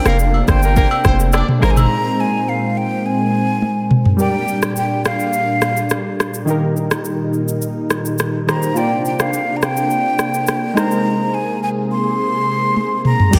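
A straight 4/4 afrobeats groove at 105 BPM rides on an up-front electronic afro-pop drum kit with a deep kick, rim click, shaker, toms and crash. A punchy, heavy 808-style bass, a brief horn-section second line with light vibrato and background agogo bells and woodblock all fall away by 1.9 s, opening a break that closes with a drum fill at 3.6 s. Over detuned sawtooth keys and a smooth, mellow pad, both with chorus, a breathy, close-miked silver concert flute carries the sultry, hypnotic melody through tape echo, the whole mix soaked in dreamy plate reverb as the chords move from Bbadd9 and Abadd9 to Gm and Eb.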